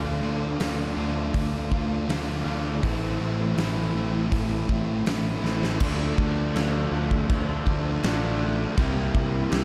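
A dark, reverb-soaked production frames this brooding, melancholic shoegaze and dream pop rock excerpt, where a biting overdriven guitar trailed by reverse reverb, a hollow-bodied semi-hollow guitar with subtle chorus tucked in the background, and a sludgy, double-tracked distorted guitar stack their riffs over a direct picked electric bass, while a huge, natural-sounding arena drum kit with a fat snare and punchy kick enters at 0.6 seconds and plays a fill into a new section at 5.8 seconds.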